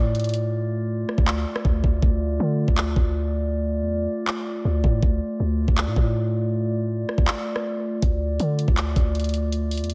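The trap drum kit hits hardest and sits up front, with a knocking kick, handclaps and rim clicks carrying an electronic, tape-warm edge. Its bright hi-hats drop out from 0.5 to 8.0 seconds, and the kick falls away from 7.3 to 8.0 seconds. This is a melancholic, hard-hitting hip hop and trap excerpt at 160 BPM in 4/4 with a half-time feel, resting on a D minor chord. Beneath it, a deep, boomy 808-style bass with a sine core and a noise layer strikes with a fast attack and decays mellowly between D2 and D3. A glass harmonica holds sustained chords from A3 to D5, its pure, ethereal tone arriving with a slow attack and a smooth, boxy small-room character. Light reverb and digital ambience give the mix a faint sense of space.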